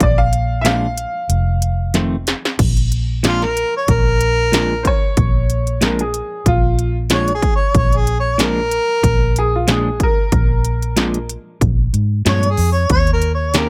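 Straight-eighth soul blues at 93 BPM in 4/4, soulful and swaggering, opens with a clear, woody, slightly detuned upright piano solo and a drum fill at 1.9 seconds from an electronic drum kit with heavy kick, clanging snare and crisp hats, over a dark, round, foam-muted fingered electric bass, while a twangy, picked clean electric guitar adds compressed stabs from 0.6 seconds and a mellow, distant harmonica takes the jazz-style melody with tongue slaps and scooped notes from 3.3 seconds, the piano, guitar and harmonica each carrying plate reverb in a lightly reverberant space, in this excerpt cut from a longer piece.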